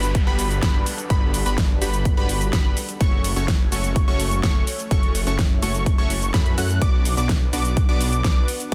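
Euphoric and anthemic, this short cut of festival progressive house runs at 126 BPM in a straight 4/4, moving from Gmaj7 to F#m and then Bm. A punchy, overdriven electronic kick sits up front from 0.1 seconds, joined by a big-room kit with a huge snare, metallic hats and shaker, all carrying overdrive and studio reverb. A thick, menacing detuned saw bass with a saturated, beating edge pumps under sidechain, while a bright supersaw stab plays an evolving riff with a filter sweep, tape echo and the same pumping. High above, a catchy plucky unison lead spins arpeggios with a noise layer, analog chorus, tape echo and sidechain pumping. A very quiet, lush pad holds slow-attack chords with chorus and phaser, and a faint downlifter sinks away in the opening 3.0 seconds, all within a dense, heavily limited modern master with little reverb on the mix as a whole.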